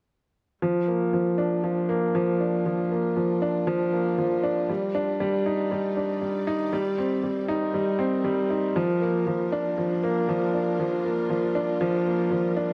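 In a steady, straight four-beat pulse, this melancholic, hypnotic electronica piece sets a woody, vintage upright piano up front, repeating a riff with long sustain through a tape echo. Behind it, a lush bowed string section holds sustained chords with vibrato and fades in across the whole passage from 0.6 to 12.7 seconds. The harmony moves from Gm7 through Ebmaj7 and Cm7 back to Gm7, all within a moderate echo-chamber reverb, in a section cut from a longer piece.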